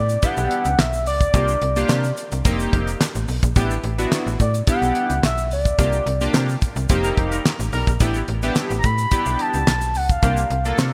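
A steady, straight 4/4 groove at 108 BPM drives this smooth, danceable slice of early-eighties boogie funk, built on a damped 70s drum kit whose fat snare, tight kick, hi-hat and handclaps sit dry and up front, with a grainy tube shaker tucked in the background. A snappy FM bass with a metallic attack punches through from F1 to C3, its notes decaying under the beat. A glossy, chorused polysynth holds sustained sawtooth and pulse-wave chords with a filter sweep, moving through A9sus4, C9sus4 and F9sus4 voicings. Over this, an expressive synth lead sings a smooth, dark melody with vibrato and a soft attack in the range from D5 to B5. A band accent arrives at 5.8 seconds, and a clear, vintage horn section with light vibrato and delay adds a brief second line between 7.0 and 7.9 seconds. The bright 1980s-style digital production carries light studio reverb, and this cut is taken from a longer piece.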